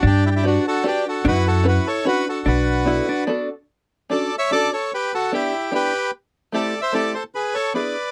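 A reedy, up-front bandoneon carries the melody through this whirling, bittersweet musette waltz at 148 BPM in 3/4, moving from B minor to D major at 3.7 s, over a woody, thumpy pizzicato upright bass and a dark, clean, picked hollow-body jazz guitar second line that both drop out by 3.5 s, while a plunky, fingerpicked open-back banjo adds twangy, percussive accompaniment from 0.4 s in a close, detailed, dry recording cut from a longer piece.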